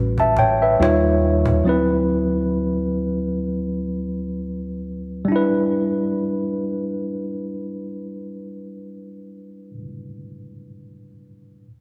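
R&B with a neo-soul lean, this short excerpt moves at a slow 62-72 BPM in 4/4 with a gentle swung sixteenth feel, carrying an introspective, late-night mood in E minor. A worn, slightly out-of-tune tine electric piano holds the accompaniment throughout, lightly overdriven and heard through built-in speakers, sitting up front across a range from D2 to A5. For the opening moments a deep dub fingered electric bass, dark, round and punchy, joins along with a woody cajon with faint snares in a small-room sound, both falling away by 1.6 seconds and leaving the electric piano alone. The harmony passes through A13, D#9 and D13 before settling on Em7 at 5.3 seconds, where a second section begins after the tempo eases during the first. A moderate echo chamber reverb with a 2.4-second tail gives the whole a sense of space.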